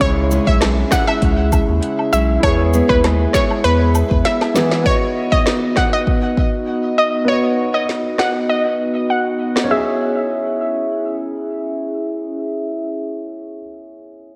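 Hypnotic and sultry, this dreamy 99 BPM dancehall cut in C# minor is soaked in plate reverb, built on an electronic drum kit with a deep kick, woody snare and metallic hats, plus a thick, saturated sub bass that drops out at 4.2 s as a drum fill arrives. Up front, a round, warbling vintage analog pluck carries the melody and gets a filter sweep from 4.9 s, while an ethereal glass harmonica holds pure, beating chords that pump against the beat. A polished grand piano accompanies, with a fingerpicked nylon-string guitar and close, dry cabasa and woodblock sitting in the background through the opening seconds, and the drums stop at 9.7 s.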